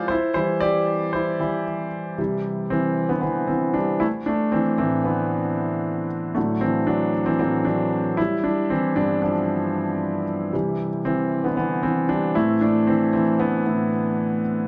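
Hopeful and warm, this short pop cut from a longer piece unfolds at 115 BPM in a straight 4/4 feel in C major. A lone concert grand piano carries the whole passage, ranging from G2 to F5 with deep bass, long sustain and a touch of audible action noise that keeps it intimate and up front. Its tone is warm, polished and present, colored by a tape echo and set in a moderately large studio reverb of 0.9 seconds, with the highs rolled off above 10.6 kHz. After a brief opening on C/E, a new section begins at 2.2 seconds and moves through C, Amadd9, D/A and G before circling back to C and Amadd9. The harmony carries an optimistic glow until the passage cuts off at 14.7 seconds.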